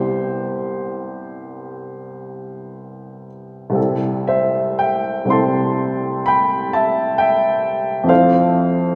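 Flowing in a loose, rubato 9/8, this dreamy, hazy impressionist piece for solo piano drifts slowly through Cmaj7, then C6 at 3.8 seconds and Fmaj7 at 8.1 seconds. The baby grand sounds clear and open, with long sustain, sitting up front as it spans from deep bass to bright upper register. A lush church reverb surrounds it, adding to the misty atmosphere of this short section cut from a longer work.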